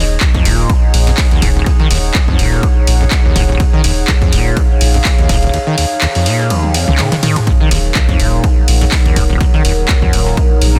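A swung 124 BPM 4/4 groove in Eb minor drives this gritty acid house cut: an up-front punchy electronic kick and a tape-toned analog drum machine with handclaps, hi-hat and toms sit over a background breakbeat sampler-style kit of compressed ride and pitched-up snare, with a drum fill from 6.5 to 7.5 seconds, while a squelchy, resonant liquid acid bass riff with overdrive, chorus and dub echo rides above a round, deep analog bass and a warbling, nostalgic lo-fi pad, both sidechain-pumped, until a moody, detuned dark analog pad joins at 7.8 seconds.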